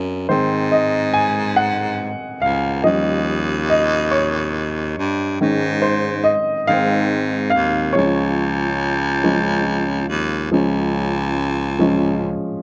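This swaying, heartfelt six-eight pop ballad in Db major moves at 47 BPM in dotted quarters, with a polished, present grand piano accompanying over a breathy, whispered baritone saxophone that carries the bass line with a soft attack and vibrato. Both parts sit up front in a moderate echo chamber reverb, lending an intimate glow as the harmony passes through Ab, Eb7, Absus4 and back to Ab before settling on Db at 8.0 seconds. The music turns to a new section at 10.5 seconds in this short passage cut from a longer piece.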